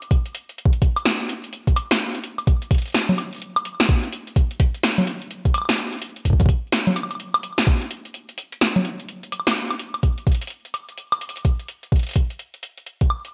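A bright, 1980s-style digital production with light reverb frames this glitchy, cerebral IDM cut, taken from a longer piece and moving at 127 BPM in 4/4 with a 62% swing on the 16ths. An up-front analog drum machine drives it, its dry, punchy snare, metallic hi-hats, congas and woodblock touched with gated reverb, while a soft electronic kick, re-recorded in a small room, sits up front alongside it. A break arrives at 8.1 seconds before a new section begins at 10.0 seconds.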